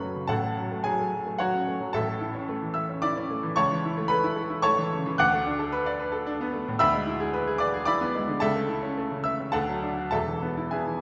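In a flexible, rubato triple metre, this sparkling, brilliant snippet from a longer classical virtuoso piano study features a solo baby grand piano with a clear, natural, up-front tone and short sustain, ranging from deep bass to high treble through a progression moving from F#m/A through A, Bm7/D and E7/D to a closing D and E, all set in a lush recital-hall reverb that places the listener further back in the room.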